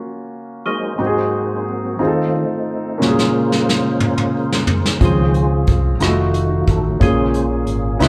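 In a live-sounding large studio room with moderate reverb, this jubilant, hopeful slow-gospel excerpt in 6/8 opens on warm grand piano accompaniment, with a mellow, round tonewheel organ taking the lead from 0.7 seconds, its key click and third-harmonic percussion colored by chorus vibrato and a fast rotary speaker, before an up-front vintage brush kit with a punchy kick and rolled-off top arrives at 3.0 seconds with a fill and a direct, fingered electric bass settles in at 5.0 seconds.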